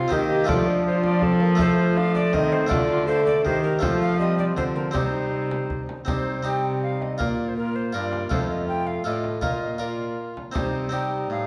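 An airy, chiffy alto recorder carries the melody of this rustic, solemn renaissance-style consort dance in triple time, over a gut-string viola second line, a mellow bassoon with light vibrato, a thin, nasal harpsichord and an up-front, rich cello bass, with a deep frame drum joining at 0.1 seconds, all set in a dark recital-hall reverb in this short excerpt from a longer piece.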